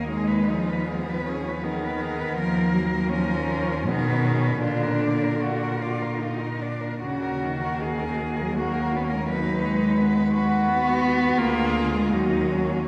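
Classical and elegiac, this solemn passage for four cellos in Eb minor moves in a rubato 3/4 at roughly 72-87 BPM, cut from a longer piece. A single cello carries the lyrical melody in a high register with soft attack, vibrato and portamento, while a second cello shapes an expressive inner line, a third supplies smooth, even accompaniment up front, and a fourth anchors the bass with close, gliding phrasing. All four sound together for the full 12.9 seconds, bathed in a wet church reverb that lends the harmony, from Abm/Eb through Bb7/D and back to Ebm, a mournful, resonant glow.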